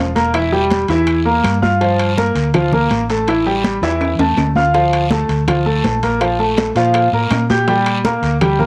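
A clear grand piano, up front and intimate with audible action noise and a cassette-tape tint and plate reverb, opens this danceable, passionate salsa excerpt at 164 BPM alongside a dark, round hollow-body electric bass, moving through Edim, Gm7, A5, Dm, Bb5 and Gm. Congas, soft-handed and damped in the background, join within a moment with a raspy guiro, ringing metal-shell timbales and woody claves. After a drum fill from 3.8 to 4.7 seconds, very quiet, tight bongos enter at 4.7 seconds, all in a small room with a homely cassette character.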